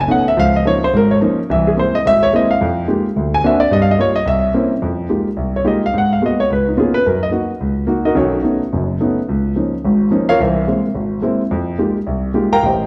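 A lone grand piano, intimate and up front with audible action noise, short sustain and a smooth, vintage tone, opens this cool, smoky jazz excerpt in F minor at a swinging 215 BPM, moving through rich chords such as Db69, Caug7, Fm11 and C7b9 within a wet, large studio reverb that gives the 12.9 seconds a live-room feel.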